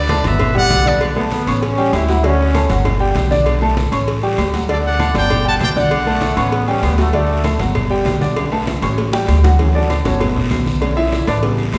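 Danceable and festive, this salsa excerpt in D major moves at 196 BPM, with a clear, slightly detuned upright piano and a woody, growly pizzicato upright bass up front over background congas, high-tuned cowbell and bongos, ringing metal-shell timbales and agogo bells, and a raspy, band-limited guiro. A tight trumpet section with light vibrato carries the melody in short phrases, while a bright trombone section plays a second line, over a cycle of Gmaj7, Bm7, A7 and D chords. After a drum fill, the piano takes a solo from 9.6 seconds, and the whole band sits in the reverb of a church or concert hall.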